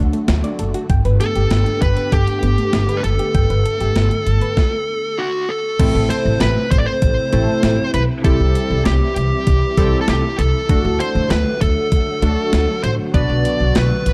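A driving, nocturnal synth-pop passage cut from a longer piece, set in a steady 4/4 with a straight feel and a dark, warm production bathed in light digital ambience. A silky vintage string machine holds mellow sustained chords throughout, colored by phaser and ensemble chorus, while a soft, round pluck traces chorused arpeggios in the background only until 4.5 seconds. Up front, a woody, growly pizzicato upright bass anchors the low end, and a clean 12-bit drum machine with a thumpy kick, medium-tuned snare, hi-hat and crash adds a tape-tinged, roomy sampler character. From 1.2 seconds a compressed, fuzz-distorted lead guitar carries the melody prominently. After a brief stop, a punchy, funky polysynth comp with chorus and a filter sweep joins at 5.8 seconds as the harmony moves through Am, C, D and Bm.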